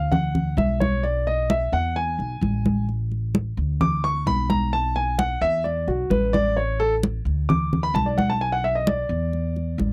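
A vintage-sounding concert grand piano leads this sunny, danceable excerpt of Cuban son and guajira, spinning arpeggios up front from F#4 to D6 with an intimate, smooth tone, deep bass and audible action noise, over harmony that moves through chords such as D, E, Asus4 and Bm7 in A major. Underneath, a woody pizzicato upright bass with steel strings holds the low register, and close, dry congas with a thick, medium-tuned skin join at 0.1 seconds. The straight 4/4 pulse runs at 130 BPM, captured in a dry, close 1970s-style studio sound with little reverb.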